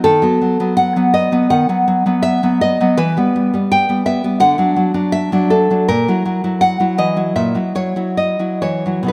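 Intimate and passionate, this romantic piece for solo classical guitar moves with a free, rubato feel in 4/4, its fingerpicked nylon-string lines ranging from A#2 to G5 across a short 9.1-second fragment cut from a longer work. The guitar sits up front with a full-bodied, deep classical tone, passing through B7/D#, Em, D and F#7/A# against a moderate, lush hall reverb. The sound has the rough character of a home demo mix.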